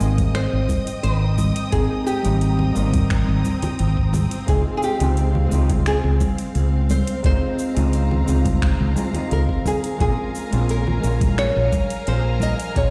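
Sunset chillout at 87 BPM in a straight 4/4, sunny and smooth, taken from a longer piece and moving through Abmaj7, Dbmaj7 and Bbm7. A woody, fingerpicked nylon-string guitar with old strings carries the melody through a digital delay, while a dark, clean hollow-body jazz guitar accompanies it through tape echo and a lush, bowed string section holds sustained chords with vibrato. Up front, a round fretless electric bass sits low under a lush chorus, and a compressed, gritty electronic kick with a thumpy, sampler-style punch joins at 0.2 seconds alongside ringing, close and dry congas. A produced R&B kit adds cabasa, finger snaps and metallic hi-hats far back in the mix. At 10.8 seconds a faint, glassy harmonics texture drifts in on a high F6, slow to bloom and long to fade in its own reverb. The whole mix has light digital ambience and is heard as if played through a big sound system in a bare stone room.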